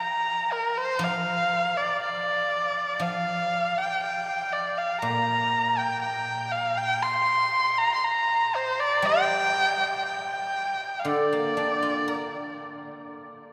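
The rhythm is free and rubato, loosely held within a 2/4 metre, giving this Chinese traditional piece a tender, wistful drift. A single bowed erhu carries the melody from the start. Its dark, woody tone is heard close and up front, shaded with vibrato and portamento. Beneath it, a guzheng played with fingerpicks supplies accompaniment in a lower register, its silvery, ringing acoustic notes sitting well behind the erhu. The erhu falls silent at 12.6 seconds, leaving the guzheng to sound alone until 13.5 seconds. Recorded in a church or concert hall, the whole passage is bathed in a long cathedral reverb, and it is cut from a longer piece.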